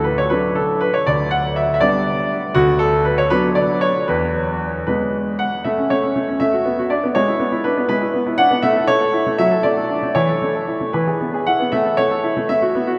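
Classical-period piano sonatina in A major, elegant and cheerful, moving at 79 BPM in a rubato 6/8, where a solo grand piano with a brilliant, vintage tone and long sustain sits up front spanning D2 to F#5, its phrases blooming into a vast cathedral reverb as the music turns at 5.7 seconds toward a cadence on A at 11.7 seconds in this short cut from a longer piece.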